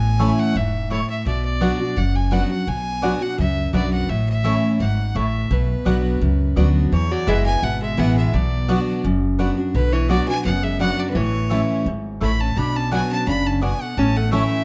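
The recording has a dark, warm production with light reverb, presenting a haunting, driving bluegrass passage taken from a longer piece in a straight 4/4 feel. A picked steel-string dreadnought guitar sits up front with a full-bodied accompaniment, alongside a thumpy pizzicato upright bass on gut strings. A clear, biting fiddle carries the melody with light vibrato and an airy bow, sounding close and intense, while a bright, woody mandolin adds double-string stabs from 0.2 seconds. At 6.9 seconds the music moves into a new section, and a lap resonator guitar enters with a metallic, nasal slide part played with fingerpicks as a second line. The chords circle between A and B minor, with an E chord opening the second section.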